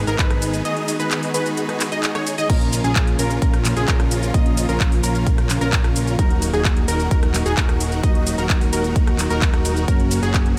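A digitally ambient, pumping mix opens this anthemic, emotional festival progressive house excerpt at 130 BPM in Eb minor, where a punchy up-front electronic kick and a metallic-hatted house kit drive a fat, nasal analog bass, a huge detuned supersaw riff with tape echo, lush ring-modulated pluck arpeggios and bowed symphonic strings in the background, while a dark, clean electric guitar with spring reverb joins at 2.5 s over chords moving from Abm through Bbm and Ebm to Gb.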